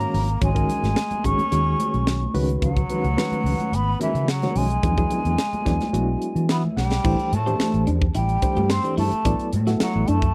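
A breathy, hollow jazz flute carries the melody in this slick, nocturnal slice of electric jazz fusion at 109 BPM in straight 4/4. Beneath it, a buzzy trombone with a metal mute plays a second line. A barky reed electric piano, lightly overdriven and pulsing with fast tremolo, supplies the accompaniment over G#m11 and E7, and it plays a short fill just before the harmony shifts to A dorian at 7.0 seconds, where Am7 and Bm7/A take over. A dark, round fingered bass and a crisp drum kit with a punchy kick and high-tuned snare sit up front, while ringing congas play with soft hands in the background. At 7.0 seconds a twangy, clean electric guitar enters with compressed stabs, colored by ensemble chorus and tape echo. The sound is dry and close, in the manner of a 1970s studio recording, and the clip is cut from a longer piece.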